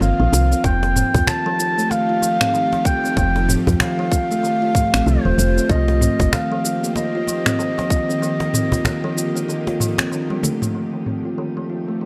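A distant, roomy clarinet carries a classical-style solo melody with tape echo and shimmer reverb until 10.1 s in this peaceful organic downtempo fragment at 95 BPM, swung on the 16ths in F mixolydian, over a ringing, hollow thumb-plucked kalimba playing arpeggios, a bright, detuned string-like drone with vibrato and sidechain pumping, a round, woody FM bass that stops at 6.3 s, an up-front afro-pop kit of cabasa, finger snaps and filtered toms, a snappy, dry cajon and a tight, overdriven electronic kick that drops out at 8.1 s; a drum fill at 10.3 s leads into a filter sweep on the drums, and the harmony moves between Cm7 and F9.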